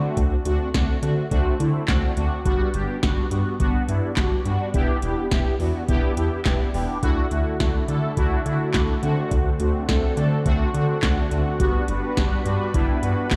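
Upbeat yet wistful, this synth-pop excerpt moves at 105 BPM in a straight 4/4 in D major, cut from a longer piece. A mellow synth brass carries the accompaniment from the start, round and brassy with detuned sawtooth tones, a filter sweep and vibrato, colored by chorus and phaser and sitting up front. Almost at once a rubbery square bass joins in, hollow and bouncy with a dark, wave-folded filter pluck, alongside an electro analog drum machine whose deep kick, punchy snare, handclaps and metallic hi-hats are overdriven and placed forward in the mix. The harmony moves from D7 through Gmaj7 and Em7, and at 7.0 seconds, as it lands on Dadd9, a lush unison pad enters with thick, warbling, vintage sustained chords under chorus, before the progression returns to D7 and Gmaj7. The whole mix sounds as if played on a big sound system in a bare room, wrapped in a moderate concert hall reverb.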